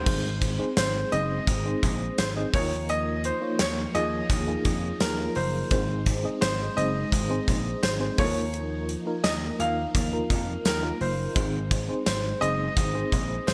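A clear grand piano carries the melody through a digital delay from the start, over a dark, tremolo-laden FM electric piano and mellow, chorused string-machine violas in the background. At 0.1 s, a punchy slap bass and an up-front gated 80s drum kit join, with a medium-tuned snare in an airy stone room; a jingly tambourine, barely audible, enters at 0.8 s. This dramatic, urgent fragment of 1980s-style pop alternates between Ab and Ebsus2 under a moderate plate reverb and bright, polished digital production.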